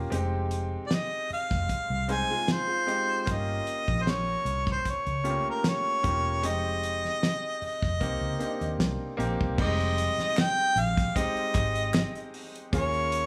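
A warm, up-front harmonica carries the melody from 0.9 s, its light vibrato and scooped notes giving a jazz-style solo a silky, cinematic cast over a 76 BPM groove in F minor that is cut from a longer piece of lush 1970s-style soul. Beneath it, a clear, intimate baby grand piano with audible action noise shapes chords like Fm9 and Cm7, while a round, punchy foam-muted electric bass and a dry, damped drum kit with a fat snare, tight kick and dark cymbals sit in a small room. A slightly broken-up, lo-fi electric guitar slips in briefly in the background at 2.1 s, and crisp group handclaps join at 10.4 s.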